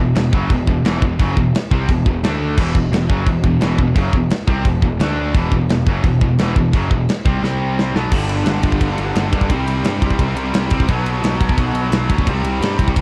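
Two bright, double-tracked electric guitars open this relentless heavy metal passage cut from a longer piece, one tight and distorted, the other scooped, high-gain and set in the background, alongside a growly, overdriven fuzz bass, before an up-front acoustic kit of kick, snare, china, crash and ride joins at 0.2 seconds, and a drum fill at 7.4 seconds carries the riffing from Em and D5 into a G5, C5 and B5 passage, framed by light reverb in a dark, warm production.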